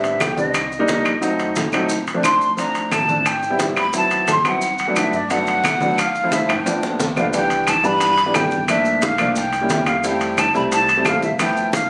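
Captured on a phone in a club-like room with moderate reverb, this sunny, lively Afro-Cuban jazz excerpt moves at 177 BPM in a straight 4/4, shifting from G major to C major at 7.3 s after a drum fill. Up front, a breathy, hollow flute carries the melody over polished, present grand piano chords, while a thumpy, woody pizzicato upright bass sits in the background. The percussion mixes ringing metal-shell timbales, close, dry congas played with hard hands, very quiet round bongos, grainy maracas and woody claves.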